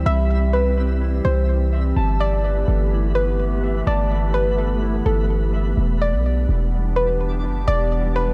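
Hazy and spacious, this short hip hop excerpt moves in a relaxed half-time feel over chords shifting from Cmaj7 to G69 and settling on Em7 at 5.8 seconds. A deep, boomy 808-style bass sits up front with a fast attack and decaying tail, anchoring the low end throughout. Above it, a warbling, nostalgic tape-like pad holds sustained chords, its detuned, lo-fi character thickened by chorus and built-in reverb. A soft, round pluck carries the melody with a dark, filtered tone, colored by chorus and delay. A clean, fingered electric guitar plays arpeggios in the background with vibrato and delay, stopping at 5.8 seconds, while a twinkling granular texture adds a sparkling, octave-up shimmer bathed in its own reverb.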